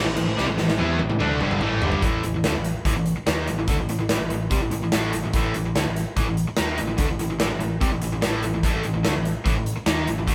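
A straight, driving 4/4 pulse powers this heavy hard rock passage, where a big, punchy, up-front acoustic drum kit enters at 0.2 seconds and plays a fill from 0.4 to 2.0 seconds while a very quiet, airy, flute-like pad holds sustained chords and a double-tracked distorted electric guitar riffs until 2.0 seconds, as a bright cranked stack guitar and a dark overdriven electric guitar keep riffing in the background over a round, amped picked electric bass, the band playing live together in one lightly reverberant room.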